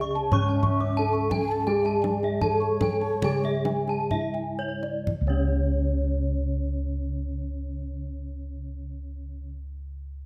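Balinese gamelan in C# pelog and 4/4, brilliant and hypnotic, moving between 59 and 98 BPM and slowing through its first 5.1 seconds, as a shimmering, mellow bronze metallophone carries the melody over a dark, smooth metallophone accompaniment and round, up-front bossed gongs in the bass, while two ringing metallophone arpeggio lines sparkle above, one boxy with slapback echo and the other dry and full, a deep, close kendang drums until 5.6 s, and a breathy, unsteady xiao with vibrato traces a second line until 4.2 s, all set in a moderate recital-hall reverb in this fragment cut from a longer piece.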